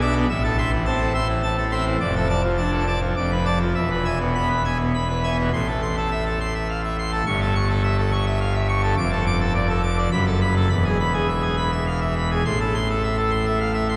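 A pipe organ on full registration carries this short passage alone, its mixtures giving the sound a brilliant edge and a touch of chiff, with a baroque-style voicing placed up front. The piece is a classical organ toccata in triple metre with a straight feel, and the mood is majestic and stormy. Its compass runs from deep pedal notes in the first octave up to high treble lines, filling the church or concert hall with a long, wet cathedral reverb that lets chords hang in the air. The harmony moves through minor-key progressions that lean toward the dominant before coming home, with a second section starting at 5.5 s and resolving at 12.5 s. The recording shows some lossy compression artefacts, and the clip is cut from a longer piece, ending at 14.0 s.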